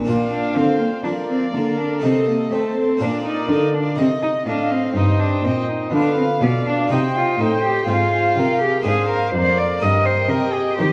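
An airy, plucked harpsichord sounds first, and from 0.1 s a rich, reedy solo cello takes the melody up front, joined by a dark, gut-string violin section in the background, a close violin second line with light vibrato, a nasal viola section and a rich cello section on bass, in this lively, festive baroque-style concerto fragment at 123 BPM in 4/4 that moves from Bb major to Eb major at 7.9 s, set in a wet recital hall and coloured by worn, warbling old cassette tape.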